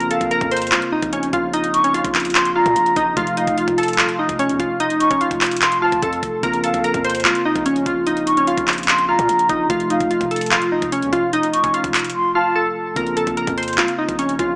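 Melancholic and dark, this half-time trap excerpt at 147 BPM in Bb harmonic minor sets glassy, chorused digital keys with a ring-modulated, filter-swept edge up front over a mellow, clean tine electric piano, a deep sine-like 808-style bass decaying in the background and a produced trap kit of knocking kick, metallic hi-hats and handclaps, while an airy, distant concert flute adds an expressive, digitally delayed second line with vibrato until 12.5 seconds, the drums dropping out from 12.1 to 13.0 seconds, all within a recital-hall reverb and a small-speaker sound.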